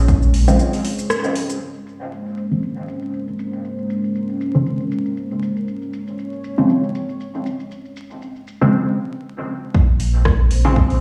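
Stone-room reverb and wet digital ambience wrap this recording, with vinyl crackle and the sound of a big sound system playing into a bare room. It is a hazy, deep dub techno passage at 118 BPM in 4/4, with a light swing on the sixteenths, resting on a Bbm9 chord in Bb minor. Up front, a muted, detuned sawtooth chord stab carries a filter sweep, chorus, phaser, cassette-tape grain and dub echo, and it pumps with the sidechain. Beneath it, a moody analog pad holds slow-attack sawtooth and triangle chords with a sub octave. A deep house kit of metallic, overdriven hi-hats, rim click and shaker runs from the opening to the close, dulled by low-pass filtering and a small room. The punchy electronic kick and round sine sub bass sound only briefly at the start, leaving a break that carries a band accent at 1.1 s, then both return together at 9.7 s.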